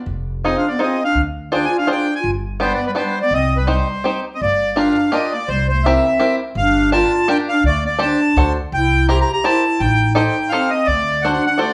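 Nostalgic and bittersweet, this musette waltz swings along at 167 BPM in 3/4, moving from C harmonic minor to G minor at 4.4 s, with a reedy, up-front accordion carrying the melody over a woody pizzicato upright bass and a twangy, fingerpicked bluegrass banjo, while a breathy, distant clarinet with vibrato and scooped notes adds a dark second line, all set in a live room with a wet large studio reverb.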